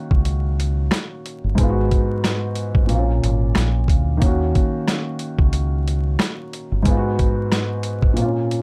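A mellow baby grand piano opens this gritty, reflective boom-bap hip-hop excerpt, its intimate, vintage tone carrying audible action noise and softened by cassette tape and plate reverb as it moves through minor chords. A sampler-style drum kit and a deep dub fingered electric bass join almost at once, setting a lightly swung groove in four. The drums sound compressed and pitched down, with a thumpy kick, a high-tuned snare, rim clicks and hi-hat sitting up front. The bass is round, punchy and direct from the amp, holding the low end until it drops out at 6.8 seconds while piano and drums carry on to the cut at 8.6 seconds. The whole production is dusky and close, with little room sound and a bed of vinyl crackle that adds to its warm, gritty feel.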